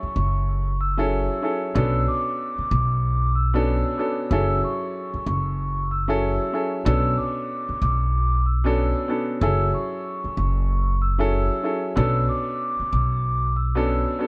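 This boom-bap hip-hop excerpt carries a reflective, gritty mood, riding a swung sixteenth-note feel as the harmony alternates between two minor seventh chords. An acoustic upright bass, plucked pizzicato on steel strings, sits up front with a thumpy, dark, woody tone in its low register until 14.0 seconds. A clear upright piano plays accompaniment through the whole clip, its short-sustain voicings given a cassette-tape grit and filtered at both ends. Above them, a vibraphone struck with soft mallets carries a high melody, its metallic, ringing tone mellow and warm, with a slow motor vibrato and a trail of dub echo. The mix has light reverb and a heavy echo character, with the bass the most prominent part and the vibraphone set a little further back.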